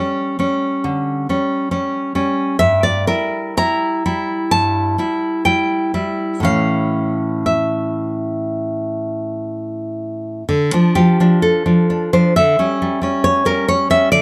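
A lone nylon-string guitar opens on an A7 chord, fingerpicked with a full-bodied, deep classical tone and a touch of finger squeak, in a melancholic, passionate romantic piece with a freely rubato feel. The harmony passes through a diminished chord over G and an A major before settling onto D minor at 10.5 seconds, then moves to an A#dim7. The guitar sits up front in a light reverb, and the passage, cut from a longer piece, ends at 14.2 seconds.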